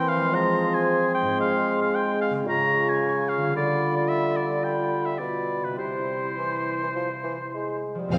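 Dramatic and stormy, this fast romantic orchestral passage moves at 100-113 BPM with a rubato feel, cut from a longer piece, as a hollow, close-miked silver flute, an up-front oboe with a smooth top, and a very quiet, roomy clarinet weave second lines over a mellow bassoon, sustained French horn chords and a ringing, fingerpicked concert harp, all passing through Fm, Db, G7/D and C. At 8.1 s the bowed strings arrive only briefly: a clear, distant violin melody, a second violin line, violas in the background, and an up-front double bass section. The whole ensemble sits in a wet scoring-stage reverb with a two-second decay.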